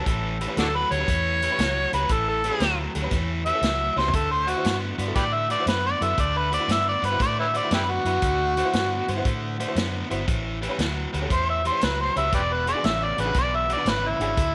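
Gritty and laid-back, this electric blues shuffle is led by an overdriven, up-front harmonica entering at 0.6 s, its jazz-style solo full of vibrato, scooped notes and tongue slaps, with slapback echo. Beneath it a biting overdriven guitar picks the riff over a dark, foam-muted fingered bass and a vintage drum kit with a punchy kick and rolled-off top that plays a fill at 3.9 s, while a jangly, metallic tack piano sits in the background and a twangy guitar through a small old amp, dressed in lush chorus and slapback echo, sounds only in the opening half-second. The changes move through A9, D9 and E9, and an echo chamber reverb gives the mix a roomy glow.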